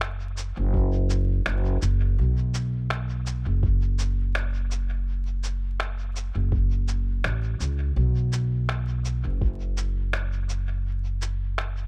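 A woody, dark pizzicato upright bass sits up front in this hazy, meditative ambient dub fragment at 83 BPM with a light 16th-note swing, over muffled, pitched-down, sampler-style finger snaps and shaker soaked in dub echo and a thumpy, tape-warm electronic kick tucked in the background from 0.7 to 9.6 seconds, all in a dry, close sound with a bed of vinyl crackle.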